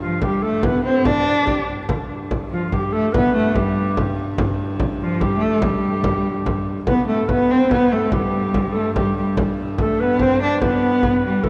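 Medieval dance in a straight triple metre, this short excerpt from a longer piece carries a rustic, ancient mood. A dark cello leads the melody up front, one bowed player singing with vibrato, portamento and a smooth, expressive top. Beneath it, a clear, fretted viola da gamba holds a ringing low drone with light vibrato, an airy bow and a reedy, gut-string tone in period style. A tenor recorder sits distant and woody behind them, playing a second line with a pure, straight tone, soft attack and a touch of chiff. A deep, large frame drum struck with hard hands sits close and up front, and all four parts play throughout, with the music moving into a new section at 6.9 seconds. The church reverb is wet and long, giving the dark production a spacious, resonant glow.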